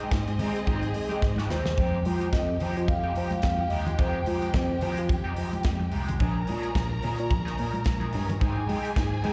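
A sultry, glamorous disco excerpt recorded as a live gig through the venue's PA with recital-hall reverb, where a clean tine electric piano with phaser carries the bass up front beneath punchy, polished drums, background congas with slapback echo, a twangy, slightly broken-up guitar with wah and spring reverb, and a lush, distant violin section, while a mellow soft-mallet vibraphone with tape echo states the melody from 1.5 to 5.1 seconds over the chords Abmaj7, Fm9 and Bbm7, and a drum fill at 1.2 seconds leads into the second section at 1.8 seconds.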